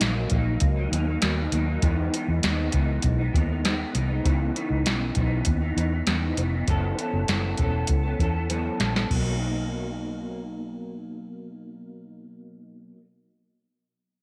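A straight 4/4 pulse at 99 BPM from a soft vintage rhythm box, with its deep kick, crisp snare and metallic hats, carries this hazy, dreamy bedroom-pop excerpt in B major, alongside a round, foam-muted fingered bass and a bright, twangy, slightly broken-up guitar through a small old amp, shimmering with chorus and vibrato over lush seventh chords in light digital reverb, until a drum fill at 8.5 seconds hands off to a sparser passage where the drums drop out at 9.2 seconds.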